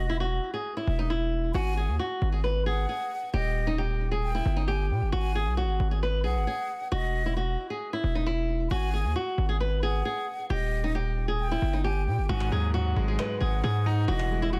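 A distorted 808-style bass, saturated and heavy with a noise layer riding its fast-attack, decaying notes, opens this brooding trap excerpt up front beside a dark, fingerpicked flamenco guitar carrying the melody. A breathy concert flute with vibrato and tongued notes adds an expressive second line above, both guitar and flute trailed by digital delay. The half-time feel moves through a dark progression from Esus2 through G#m7 and Emaj7sus2, returning to G#5 and D#. At 12.3 seconds a smooth, clear concert grand piano enters with deep bass accompaniment, joined by a very quiet cajon with hard hands, faint snares and a woody, band-limited tone. The small room ambience and dense, heavily limited modern master give the piece a close, compressed weight.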